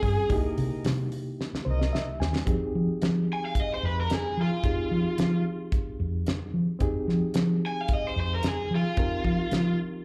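Straight-eighth soul blues with a smoky, soulful mood, caught live at a club gig through the venue's PA and cut from a longer performance. A cranked stack guitar sits up front, bright and overdriven with picked notes, spring reverb and slapback echo, and it opens with a solo over a C7#9 chord. A distant, roomy horn section adds tight sustained chords with light vibrato from 0.3 seconds, while a reedy electric piano carries the accompaniment with a fast tremolo and slapback echo. The drum kit is cloth-damped and thuddy, with a fat snare, tight kick and rolled-off top, and it plays a fill alongside an electric piano fill from 1.4 seconds. Beneath them, a hollow-body short-scale bass played with the fingers gives a dark, round, amped low end as the music settles onto Fm7 at 2.5 seconds.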